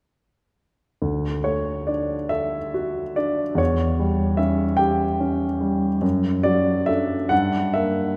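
Tender and serene, this brief passage cut from a longer piece is a romantic classical nocturne for solo piano in 6/8, shaped with free, breathing rubato. A grand piano carries the whole performance from 1.0 to 8.2 seconds, its tone intimate and natural, placed up front so that the noise of its action can be heard beneath the notes. The writing spans from D2 in the bass up to G5. The harmony drifts from D through C#dim/E at 3.6 seconds and D/F# before darkening onto Gm at 7.3 seconds. A wet church reverb with a long 3.5-second tail surrounds the instrument, giving it the spacious glow of a church or concert hall.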